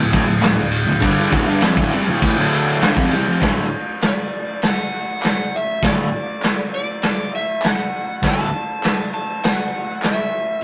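A bright, double-tracked fuzz guitar leads this raw, swaggering garage rock excerpt, playing a compressed, picked riff low in its register from the opening until 8.5 seconds. A vintage acoustic drum kit sits up front beside it, with a tight kick, a medium-tuned snare, and dark crash and ride cymbals, all in a gritty, saturated tone with a rolled-off top. Group handclaps sound hollow in a small room, tucked in the background. At 4.1 seconds an overdriven electric slide guitar enters with a fingered melody in a high register and carries on to the close. The tune moves at 100 BPM in a straight 4/4 in D major, shifting from a D5 power chord to a D chord as a second section begins at 3.4 seconds, and the recording has the rough, tube-saturated feel of a rehearsal room, with moderate studio reverb.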